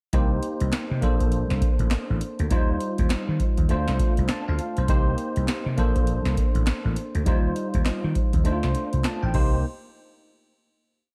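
R&B new jack swing at 101 BPM in C dorian, punchy and bouncy with a hard 16th-note swing, built on a booming analog drum machine whose deep kick, crisp snare layered with handclaps, metallic hats and crash carry gated reverb; a growly, amped vintage slap bass drives a bouncy synth-funk line full of muted ghost notes, slides and chromatic approach notes; and a bell-like tine electric piano with ensemble chorus sits up front, holding drop-2 chords through a Cm7, Bbmaj9, Eb69, Dm7 cycle with grace notes and short fills, until the kick drops out at 8.4 seconds and the verse ends at 9.6 seconds on a final hit.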